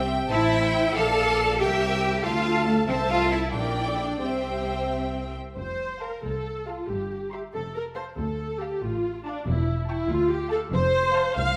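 A moderate scoring-stage reverb surrounds this string-orchestra excerpt, a quick, restless and stormy classical-period movement in F major at 93 BPM in a straight 6/8. Clear first violins, singing with vibrato, carry the melody high in their range over a smooth second violin line. Beneath them, up-front, expressive violas play the accompaniment, while focused, lush cellos and distant, even double basses share the bass. A minor-leaning first section gives way at 5.6 seconds to a brighter passage on F, which turns back toward D minor before closing on an open F.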